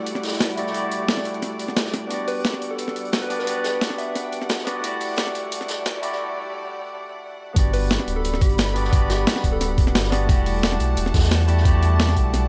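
A bright, barky tine electric piano with analog delay opens this lush, dreamy liquid drum and bass excerpt in G major at 176 BPM, over a dark, bowed chamber string section played sul tasto with light vibrato and sidechain pumping, while an up-front, gritty breakbeat kit and a saturated vintage kit in the background carry the hi-hat and snare. A round, warbling FM synth lead with chorus and dub echo sings its gentle melody in two short phrases from 2.3 s and again around 7.7 s, floating over chords that alternate between Em11 and Gmaj7. After a brief break, the drop at 7.6 s brings in a deep, full sub bass with octave and a thumpy, tape-toned electronic kick, all set in a moderate spring reverb within an echo-heavy mix.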